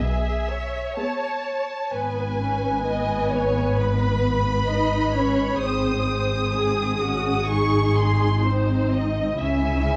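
Moving at a slow 64 BPM in 4/4 with a flexible rubato feel, this serene romantic movement for string orchestra is cut from a longer piece, its harmony passing from E through G#m and G# to C#m. Lush bowed violins carry a smooth, even melody high above a second violin line that glides with portamento and sits more distant, while violas enter at 1.0 s with expressive accompaniment and close-sounding cellos join rich double basses on the bass. Vibrato colours every section, and a moderate scoring-stage reverb gives the dark production a gentle glow.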